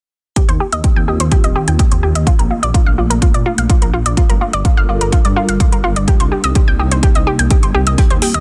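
A punchy, tape-warm electronic kick sits up front in this dreamy, emotional progressive house excerpt at 126 BPM in a straight 4/4, entering at 0.4 s alongside metallic, layered electronic hi-hats with a touch of small-room ambience. A dark detuned saw bass rumbles and beats from Eb1 to Bb2, saturated and sustained, shaped by sidechain pumping. Above it, a round, nasal analog pluck spins arpeggios between F4 and G5, its wave-folded filter pluck carried by chorus, digital delay and sidechain pumping. An airy, breathy pad arrives at 1.0 s with slow-attack sustained chords from C3 to Bb4, shimmering through chorus and phaser as it moves from Eb6 through Bbmaj7, Gm7 and Cm7. Near the close, at 8.0 s, a very quiet acoustic hi-hat with a smooth, rolled-off top slips in, all within a dry, dense and heavily limited modern master.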